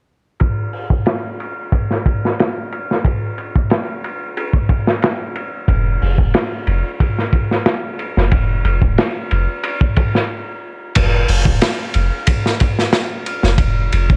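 A crunchy, gritty breakbeat kit of kick, snare, hi-hat, ride and crash opens this hypnotic, cinematic trip hop excerpt, its low-pass-filtered small-room sound up front with dark cymbals and a rolled-off top, before a soft, round, sine-like 808-style bass enters at 5.7 s with deep, decaying notes, all under light reverb and the warbly pitch drift of worn cassette tape, with a brief stop from 10.3 s to 11.0 s before a new section begins.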